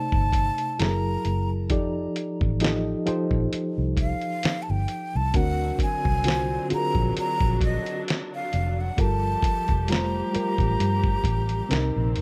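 Late-night and soulful, this short excerpt from a longer R&B and neo-soul piece moves at a slow 66 BPM in 4/4 with a gentle sixteenth-note swing. A breathy jazz flute carries the melody up front, its soft attack, vibrato and lifted highs giving the line an expressive, airy glow. Beneath it, a reedy, worn electric piano with a harmonic tremolo plays the accompaniment through its built-in speakers, slightly out of tune, over a dark, round, foam-muted electric bass. A gritty, compressed sampler-style drum kit sits up front with a thumpy kick, fat snare and hi-hat, all carrying a tape-warm character. At 5.3 seconds a distant, lush string section enters with bowed sustained chords as the harmony shifts from Cm69 through F13 to D7alt and on to Gm9, all wrapped in light reverb.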